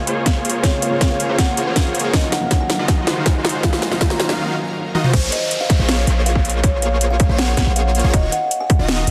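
This lush, dreamy future bass excerpt opens on a soft, muted upright piano tucked in the background and huge, detuned supersaw chords, both pumping against the sidechain and trailed by delay, with the supersaws also run through a low-pass filter. Up-front overdriven drums drive the half-time feel: a hard-clipped electronic kick and a trap kit with a sharp snare, metallic hats, crash and toms, both re-recorded in a small room. A drum fill, background risers and downlifters, and a very quiet, ethereal pad with shimmer, granular texture and phaser build the tension. Through it all, a buzzing kalimba plays the melody with a woody, hollow-box pluck, pumping and soaked in dub echo. The drop arrives at 5.1 s, bringing a deep, boomy 808-style bass and a very quiet, airy lead playing arpeggios with chorus, vibrato and portamento, while the piano stops at 5.2 s. The harmony moves between Bbm9 and Ebm9 under light reverb and a dense, heavily limited modern master.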